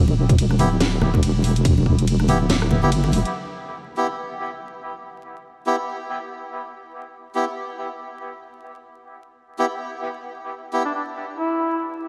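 A deep, sustained wobble bass with chorus opens this cavernous, meditative deep dubstep excerpt in E minor at 142 BPM with a half-time swing, joined at the drop by hand-struck congas and bongos with dub echo, a tight layered electronic kick and a garage kit of cracking snare, bright hats, ride and rim click. A reedy, nasal melodica enters with stabs at 0.6 seconds and carries on after the kit falls away at 3.3 seconds, drifting through a dreamy, reverb-soaked space with vinyl crackle until a vibrato-laden duduk melody with scooped notes enters at 10.9 seconds.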